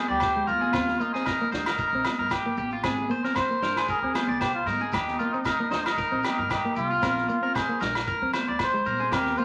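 Warm and joyful, this short cut from a longer highlife guitar band piece moves at 114 BPM in 4/4 with a gentle 16th-note swing, set in Bb mixolydian. A cup-muted trumpet carries the melody up front, its veiled, breathy tone shaded with vibrato, soft attacks and scooped notes in a vintage jazz style. Beside it, a bright, twangy electric guitar at the edge of break-up picks arpeggios through spring reverb, while a dark, clean, fingered electric guitar supplies the accompaniment beneath. A woody pizzicato upright bass with steel strings anchors the low end, and a gritty, saturated vintage drum kit with a punchy kick and medium-tuned snare sits mid-forward. Ringing agogo bells, high-tuned congas heard from a distance and a grainy shekere in the background fill out the percussion, all within a moderate large-studio reverb as the chords move from Bbadd9 through Ebadd9 and Abadd9 before returning to Bbadd9 at 7.0 seconds.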